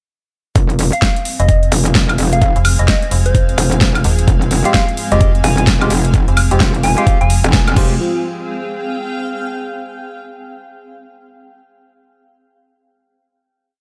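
A swung four-on-the-floor groove from a knocking electronic kick drives this gritty, aggressive bass house drop, as a big-room dance drum kit adds a huge overdriven snare, programmed hats, woodblock and crash beneath a saturated, wobbling metallic bass and a chopped, digital FM bass that answers it, while a soft, warbling synth bell plays short phrases, a hollow percussive organ stab enters with syncopated chord stabs at 4.7 seconds, a very quiet dark analog pad sustains beneath, and a blurred, evolving granular cloud pad lingers alone through the final chord from 8.0 seconds in a dry mix.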